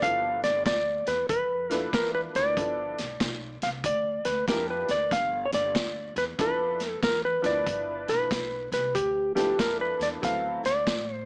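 This electric blues shuffle has a rollicking, soulful mood and a swung 4/4 feel, heard in a short excerpt cut from a longer piece. A clean lap steel guitar carries the melody up front, its dark, fingered slide tone set in plate reverb. Beneath it, a detuned honky-tonk upright piano plays a jangly, boxy accompaniment, also bathed in plate reverb. A woody pizzicato upright bass with gut strings gives a thumpy low end, while a vintage drum kit adds punchy kick, medium-tuned snare and hi-hat with a rolled-off top. The harmony rests on G13 before moving to D13 at 10.2 seconds, and the whole mix has a small-speaker sound in a moderate studio room.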